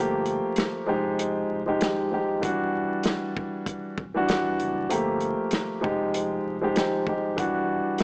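Gritty and dark, this boom-bap hip-hop fragment swings in 4/4 as a dark, mellow grand piano with audible action noise and long sustain sits up front through cassette tape and filtering over Gm9, Fm9 and Em9 chords, alongside a deep, saturated sub bass in the background and, from 0.3 seconds, a tight, roomy soul drum kit of kick, snare and hi-hat, all colored by light reverb, vinyl crackle and a small speaker sound.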